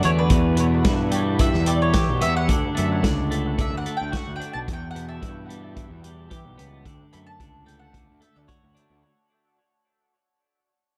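Psychedelic rock at 110 BPM, this mysterious, trippy nine-second excerpt is a mandolin solo, its bright, woody double strings carrying the melody through dub echo over an Em to D vamp, with the whole passage fading out. A clean, compressed twelve-string electric guitar plays the riff through flanger and dub echo, while a dark, round fuzz-picked bass with overdrive punches underneath. An acoustic vintage drum kit with a medium-tuned snare and rolled-off top keeps a straight 4/4 in a small room, all set in an echo-heavy mix with light reverb.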